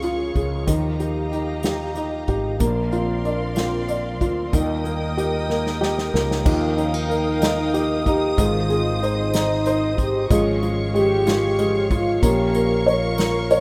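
A tender, romantic pop ballad in six-eight opens on a soft, felt-muted upright piano whose thin, short-sustained tone carries the accompaniment, joined from the start by a studio string section holding bowed chords with vibrato and a smooth top. Underneath, a fretless electric bass gives a round, punchy low end, while a fingerpicked steel-string acoustic guitar with old strings adds woody arpeggios from the background. An acoustic drum kit played with bundle sticks sits up front, its medium-tuned snare, hi-hat, crash and punchy kick setting a straight pulse, and a drum fill between 5.5 and 6.5 seconds leads into the second section. At 6.5 seconds a dark, distant French horn section enters with a classical-style second line. Light reverb and small-room ambience give the piece the rough, intimate sound of a home demo, cut from a longer piece.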